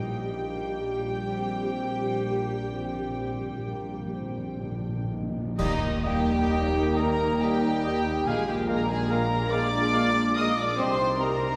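Floating, pure violin sections played sul tasto carry the melody and a second line in this lyrical, serene slow romantic orchestral movement in Eb major, a rubato 12/8 at 40-50 BPM, over dark, woody violas, a rich cello section, an intimate double bass section, a mellow tuba, distant horns holding chords and a very quiet timpani fill from 2.7 seconds, until at 5.6 seconds a dark clash of cymbals and concert bass drum marks an accent as an airy flute ensemble, a faint clarinet, a cor anglais and a roomy bassoon join, the orchestra soaked in a long cathedral reverb in this excerpt from a longer piece.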